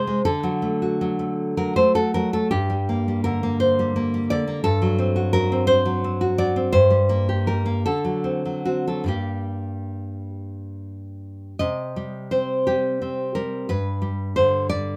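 A light reverb surrounds a single nylon-string guitar placed up front, its tone full-bodied and deep in the classical manner. This brief, intimate cut from a longer romantic piece for solo guitar moves in a slow, rubato 6/8, with the dotted-quarter pulse drifting between 46 and 62 BPM. The fingerpicked line spans G2 to Eb5 and settles in G minor, circling through D, Gm, D7b13 and D7 with a wistful quality. At 11.6 seconds the music shifts toward C minor, moving from Cm to a G chord before the excerpt closes at 15.0 seconds. The guitar plays alone throughout, and the close, unhurried sound gives the fragment a private, reflective character.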